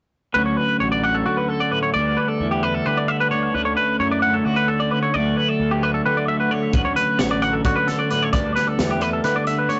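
Twangy, up-front electric guitar arpeggios and a dark, overdriven fuzz bass open this intricate, bright math rock and midwest emo excerpt in 7/8, joined at once by a chiming twelve-string electric guitar picking lush chords over a held D, before a crisp, pumping fusion kit with a punchy kick and high-tuned snare enters at 6.7 seconds, all captured as a rough, saturated rehearsal-room recording with a short small-room ambience and a dulled top end.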